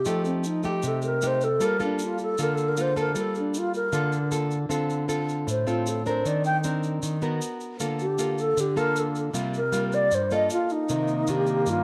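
Intimate and melancholic, this bossa nova excerpt in G minor at 155 BPM sets a pure, close-miked alto flute melody with vibrato over fingerpicked nylon-string guitar, up front with fresh strings and audible finger squeak, and a grainy, vintage egg shaker, all bathed in wet spring reverb and small-room ambience, before a raspy, growling trombone enters on a second line at 10.9 s as the chords move from F9 through Gm9 to a closing Cm9.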